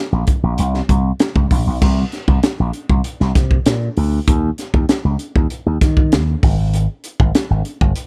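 Polished 1980s jazz-funk pop at 98 BPM in a straight 4/4, this short cut from a longer piece carries a nocturnal, slick mood. A slap bass run through an envelope filter enters at 0.1 s, sounding electric, direct and amped, with a bright, punchy edge as it moves between G1 and Eb3. A crisp acoustic fusion drum kit joins at 0.3 s, with a punchy kick, a high-tuned snare, hi-hat, and bright crash cymbals in a small, pumping room. Both parts sit up front in a dry mix that shifts into a new section at 1.8 s and runs to 8.1 s.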